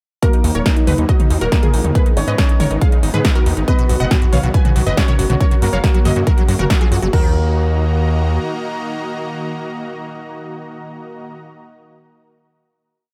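A dry, punchy mix opens straight into the drop of this driving, bittersweet uplifting trance piece in Eb minor at 139 BPM, where a lush, detuned unison pluck spins a repeating sixteenth-note riff in thirds and sixths over a pedal note, pumping against the kick and trailed by dub echo, doubled very quietly by a round analog pluck and shadowed in octaves by a dark, mellow grand piano with delay. Beneath, a layered four-on-the-floor kick and a big-room kit with metallic hats, snare, toms and crash drive a gritty, saturated synth bass in galloping sixteenths, while a slow-attack supersaw pad breathes with sidechain pumping across the Ebm, Abm, B and Gb changes. From 3.7 to 7.3 seconds a squelchy acid bass, phased and chorused in the background, loops a 3-step sequence drifting against the bar, and after the drums drop out at 7.2 seconds the piece settles on a final Ebm chord.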